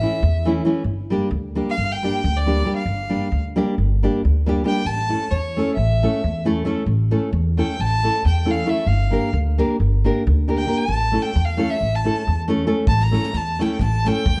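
A restless, virtuosic Balkan wedding-band piece in 9/8 opens with a bright, intense bowed violin playing the solo melody with light vibrato over fingerpicked, full-bodied nylon-string guitar and woody pizzicato upright bass, moving between A and Gm in a dark production with light reverb until an airy, natural drum kit with punchy kick and medium-tuned snare joins at 12.9 seconds.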